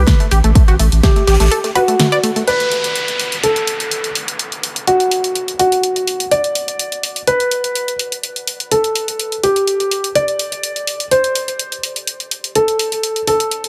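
Progressive house at 125 BPM with an uplifting, expansive mood, this excerpt sets a dark, mellow grand piano melody with delay and sidechain pumping over a tight, detuned sawtooth-and-square arpeggio synth with chorus and phaser, a deep saturated sub bass, a punchy electronic kick and a very quiet acoustic arena kit. The kick drops out by 1.1 seconds, and the others drop away by 2.4 seconds after a break at 1.5 seconds, leaving the piano and a layered pop drum kit with a fat snare, joined by an electronic downlifter from 2.5 seconds, in light small-room reverb.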